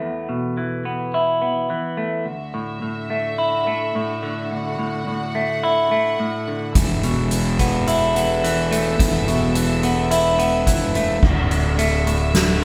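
A straight 4/4 pulse at 107 BPM drives this hopeful, euphoric post-rock passage in D major, cut from a longer piece, opening on a dark, clean semi-hollow electric guitar playing fingered arpeggios up front over Esus4 and Dadd9 chords. A bright, biting symphonic string section enters at 2.3 seconds with distant sustained chords and light vibrato, and at 6.8 seconds a growly, fuzz-overdriven fingered bass and a soft-mallet drum kit with a boomy kick, medium-tuned snare and dark cymbals join in. The band plays live together in a small room whose wet reverb surrounds the whole.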